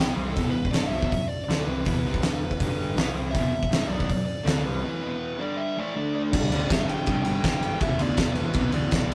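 A big, low-tuned acoustic drum kit sits up front in this menacing, swaggering garage rock excerpt, its fat snare, punchy kick and dark cymbals saturated and pumping in a large room, driving a straight 161 BPM in E minor. A bright, double-tracked fuzz guitar picks out the riff beside a darker, compressed fuzz lead carrying the melody, while an overdriven picked electric bass growls in the background. A break arrives at 4.8 seconds before the second section starts at 6.3 seconds, and the whole take has the rough, lightly reverberant feel of a rehearsal room.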